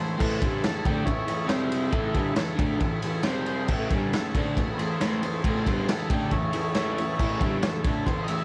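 A transistor combo organ takes the solo throughout this rowdy, swaggering garage rock fragment, its overdriven, buzzy tone carrying the melody with a light vibrato over a straight 137 BPM beat in 4/4. Beneath it, a second combo organ holds clean, sustained chords in the background, while a crunchy, double-tracked electric guitar sits up front with a picked, overdriven riff. The raw drum kit enters at 0.2 seconds, its boomy kick, medium-tuned snare and dark crash and ride cymbals sounding saturated and gritty with a rolled-off top and a pumping small-room character. Rooted in A mixolydian and tuned slightly below standard pitch, the harmony moves between A and C5. The whole cut from a longer piece has the feel of a home cassette recording, with light reverb and a small room ambience.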